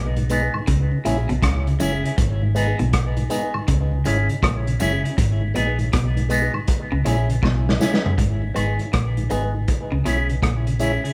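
A laid-back roots reggae groove at 80 BPM in 4/4, swung on the sixteenths, rocks between G# minor and C# minor in a meditative mood through this short cut from a longer piece. The vintage drum kit sits up front with a muffled, lo-fi character, a punchy kick and a medium-tuned snare, working hi-hat, rim clicks and toms, and it plays a fill from 7.4 to 8.2 seconds as the music moves into a new section. A dark, foam-muted fingered bass holds the low end with a round, punchy tone, while a mellow tonewheel organ, complete with key click, turns through a slow rotary speaker and tape echo. A bright, twangy electric guitar played through an envelope filter adds phaser and tape echo to its part higher up, and a clean, compressed guitar riff with a warbly pitch drift sits low in the background. Tambourine and woodblock, along with egg shaker and group handclaps, tick quietly and close in the background, and the whole band sounds as if it is playing live together in one large studio with a moderate reverb.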